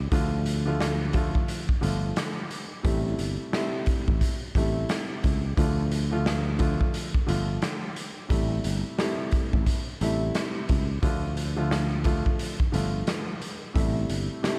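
Gritty and reflective, this boom-bap hip-hop excerpt rides a swung 16th-note groove over a steady alternation of Dm and Am7. A saturated garage drum kit sits up front with a punchy kick, medium-tuned snare, rim clicks and hi-hat in a bright stone room with a rolled-off top, while a growly, directly amped fretless electric bass sustains low beneath it. A mellow, intimate baby grand piano with audible action noise and a vintage, plate-reverbed shade carries the harmony, all under a layer of vinyl crackle.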